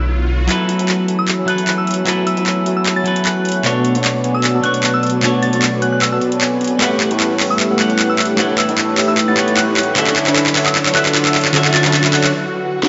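A moderate, lush hall reverb wraps this dreamy future bass passage, and its highs are gently rounded off. The piece sits at 152 BPM in F# minor with a half-time feel. A thick, detuned saw bass with chorus and tube saturation sounds only briefly at the start, alongside a very quiet riser, before the build-up begins at 0.5 seconds. A trap kit then enters up front, with a sharp snare, metallic hi-hats and handclaps, and plays a drum fill across the build. A mellow supersaw riff with a low-pass filter sweep moves through F#m11, Bm9, A13 and Dmaj9. A bright, twangy clean electric guitar supplies accompaniment, while a rich string section holds smooth bowed chords in the background. From 1.2 seconds a glassy, crystalline FM bell carries the high melody, warbling with chorus, tremolo and tape echo, until a short break and a soft swell close the passage from 12.3 seconds.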